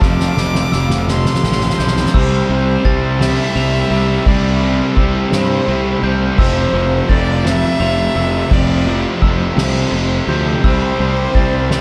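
This excerpt carries a dark, warm production with light reverb and a small-room ambience, framing a euphoric, cinematic post-rock passage in C major that moves at a slow 56 BPM in a straight 6/8. A bowed solo violin carries the melody with a rich, biting tone and vibrato, its line treated with analog delay, while a lush symphonic string section holds very quiet sustained chords beneath it. Up front, a growly, fuzz-laden fingered bass drives the low end with overdrive, and two bright, picked, distorted electric guitars play a riff further back in the mix. A glockenspiel struck with rubber mallets rings out mellow, bell-like arpeggios high above, also treated with analog delay. The drum kit is played with soft mallets on drums and cymbals, sounding distant and roomy with a fat snare and punchy kick, and it opens with a fill during a build-up over the first 2.1 seconds before the full passage settles into alternating Fmaj7 and C6 harmony.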